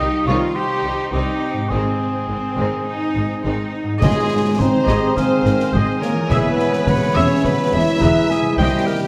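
A straight 4/4 pulse at 105 BPM drives this cinematic, heroic adventure cue in Ab major, cut from a longer piece and carrying a triumphant, soaring mood. From the opening, a lush violin section carries the melody in the background with vibrato. Around it, a second, very quiet and distant violin section, a punchy cor anglais and an expressive viola section with portamento add supporting lines over ringing harp arpeggios, while a close, focused cello section and a smooth double bass section hold the bass. At 4.0 seconds the orchestra broadens: an airy flute with crisp attack and a clarinet add further lines, a dark, roomy French horn section and a very quiet, mellow trombone section hold sustained chords, and snare drum, clash cymbals and bass drum enter with bright cymbals, joined by timpani struck with hard mallets on Ab2 until 4.8 seconds. The harmony moves from C minor to Ab and then to E, and the orchestra sits in a wet scoring stage reverb.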